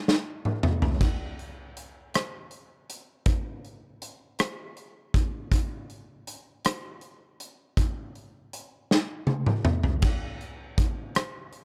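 Pop in a heartfelt, tender mood at 53 BPM in a straight 6/8, this brief excerpt features only a huge arena drum kit, natural and up front with bright cymbals, a punchy kick, a medium-tuned snare, rim clicks, hi-hat and toms under light reverb in a dry, close 1970s-style studio sound, with drum fills at the opening and from 8.9 to 10.0 seconds leading into a new section at 10.0 seconds.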